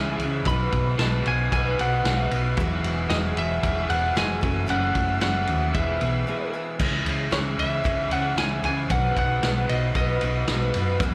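This live club recording, heard through the venue's PA with small-room ambience, catches about 11 seconds of jangly, warm folk rock and heartland rock at 114 BPM in a straight 4/4, moving through B, Eadd9, F#m7 and E before settling onto C#m and B after a brief break at 6.3 seconds. A lightly driven, compressed lead guitar carries the melody through slapback and tape echo over a shimmering, octave-doubled twelve-string acoustic with audible finger squeak, while a twangy, slightly broken-up electric guitar riff sits in the background through analog chorus. An up-front, round, dark fingered bass and a punchy vintage drum kit with dark cymbals anchor the groove, as a very quiet grand piano with short sustain drops out at 6.7 seconds and a distant, earthy chamber string section holds sustained chords throughout.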